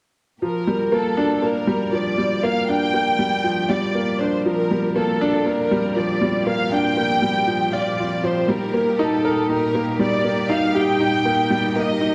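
Electronica in G minor at 119 BPM, cinematic and hypnotic, this brief cut from a longer piece sets a clear, woody upright piano riff up front beside a dark, soft-attacked violin section melody played sul tasto with vibrato, while a rich, lush symphonic string section fades in underneath with sustained chords in the background, all moving from Gm7 to Eb at 8.5 seconds within a recital hall reverb and small room ambience.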